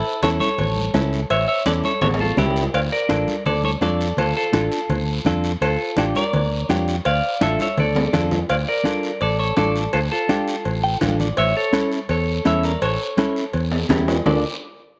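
A straight 4/4 cumbia groove opens this fiery, danceable latin clip, cut from a longer piece, with congas, cowbell and timbales, and guiro all entering at 0.2 seconds. The ringing, medium-tuned congas sit in the background, while the metal-shell cowbell and timbales ring out and the guiro adds a raspy scrape, with drum fills at 2.0, 8.0 and 13.7 seconds marking the turns of the phrase. A round, dark fingered electric bass sits up front in a low register, and a clean, compressed, fingered electric guitar carries the accompaniment with a slapback echo. Over this, a picked, twangy clean electric guitar plays the melody from the very start, bathed in spring reverb, and adds a short fill in the second section. The harmony sways between A and D minor in a dry outdoor sound.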